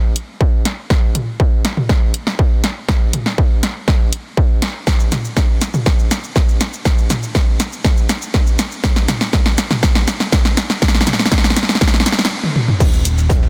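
A cinematic, melancholic melodic techno build-up at 121 BPM opens at 0.2 s with a punchy, up-front deep house kit of crash, hi-hat, shaker, snare and toms, playing a long drum fill with its cymbals, hats, percussion and toms pumping under sidechain; a layered, distorted electronic kick joins at 0.4 s. After a brief stop at 12.3 s, a fat, detuned sawtooth analog bass with a fast attack lands on Eb1 at 12.8 s, beside a dark, smooth brush kit tucked in the background with high-passed hats and snare. Light reverb sits over a dense, heavily limited modern master, and the cut ends at 13.5 s.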